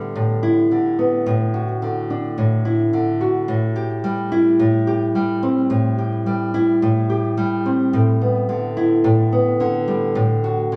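Folktronica at 108 BPM in A dorian, this delicate, wistful excerpt features a lone nylon-string guitar, dark, boxy and fingerpicked, sitting small and up front in an echo chamber reverb as it moves from G6/A and Dadd9/A into Am7 at 3.5 seconds before circling back through G6/A and Dadd9/A, tuned slightly sharp to A4 = 444 Hz.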